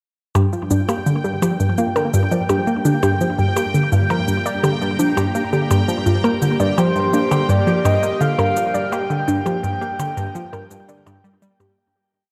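Ambient, sequencer-driven space music in G minor at 84 BPM, hypnotic and cosmic, where a round, detuned analog pluck riff loops five steps against the bar up front while a warbling, dusty pluck spins twelve-step arpeggios, a lush vintage string machine fades in beneath with sustained chords, a bubbling, resonant filter texture holds a high G5, light shaker and low woodblock blips tick through analog delay, and a breathy, flute-like lead with vibrato drifts in at 6.8 s before the whole piece fades out from 8.0 s, all softened by plate reverb and a cassette-tape haze.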